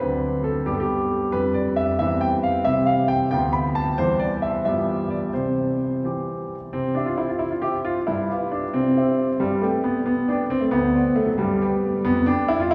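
In a straight 6/8, this cheerful, elegant classical-period sonatina passage for solo grand piano is played up front with a clear, intimate, natural tone where the instrument's action noise can be heard, spanning from D2 to B5 and set in the long, wet reverb of a cathedral-like space, moving through one section and into a second at 6.7 seconds.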